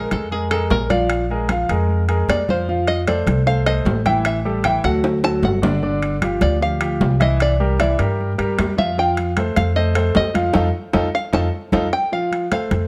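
A twangy, plunky open-back banjo, fingerpicked, carries the melody from the very start of this lively, danceable Afro-Cuban jazz excerpt, over a warm concert grand piano with deep bass and a woody, dark pizzicato upright bass sitting up front. Bright, thin-skinned congas in the background and ringing, dry metal-shell timbales join almost at once, with a drum fill at 5.0 seconds and a band accent arriving at 10.5 seconds. Light reverb sits over a dark, warm production.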